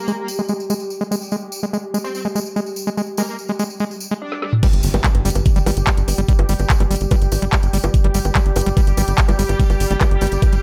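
This psychedelic trance excerpt opens with a metallic, wobbling FM bass line, distorted and chorused with a dub echo, sitting beside a bubbling, detuned sawtooth texture whose resonant filter steps at random while it sustains chords. A squelchy, gritty acid bass riff, overdriven and echoing, joins almost at once alongside a jingly, bright tambourine, all pumping against the pulse at 145 BPM in a straight 4/4. The wobble bass drops out at 4.5 seconds as a garage drum kit fill leads into the drop at 4.6 seconds. There a knocking, layered electronic kick pushes up front, and a tight, punchy sequencer bass with a plucked filter and mellow decay drives beneath it. The drum kit carries on with a woody snare, metallic hats, handclaps and crash cymbal, all muffled by low-pass filtering, while a very quiet electronic impact marks the arrival of the drop. The mood is hypnotic and intense, set in a light reverb.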